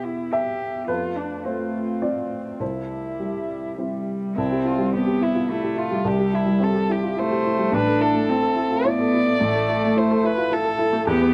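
Neoclassical piano and strings in a hopeful, tender mood at 107 BPM in 3/4 with a rubato feel in C major, where a dark, woody, slightly detuned upright piano accompanies a veiled, muted cello second line and a hollow, flute-like pad with chorus sustains chords in the background, before a muted violin with vibrato takes the melody from 4.4 seconds over chords moving from Em through F and C to Am, all in light reverb in a short cut from a longer piece.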